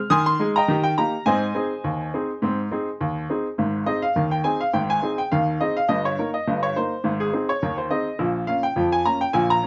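A bright baby grand piano opens this jaunty, cheerful ragtime fragment on its own, cut from a longer piece and playing solo throughout its 9.7 seconds. At 104 BPM in 2/4 with a light swing on the sixteenths, the music sits in Ab major, moving from Ab/Eb through Eb and back to Ab in its opening phrase. Around 3.6 seconds a new section begins, passing through Eb/G and Ab before touching Bbm near the close. The piano ranges from a deep G1 up to a sparkling Eb6, its tone brilliant and natural with a short sustain that keeps each note crisp. Placed up front in a light reverb, the instrument sounds close and clear.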